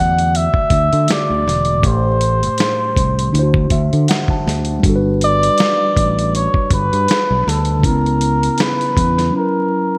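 A lightly swung sixteenth-note feel in 4/4 carries this sultry, late-night neo-soul R&B fragment, where a breathy, veiled cup-muted trumpet plays an up-front jazz solo with light vibrato over clean, mellow tine electric piano chords that add a fill from 3.3 to 4.8 seconds, a warm fingered electric bass, and a gritty, compressed sampler-style drum kit with a thumpy kick and gated reverb, the bass and drums stopping at 9.3 seconds, all within a bright 1980s-style digital production with vinyl crackle and plate reverb.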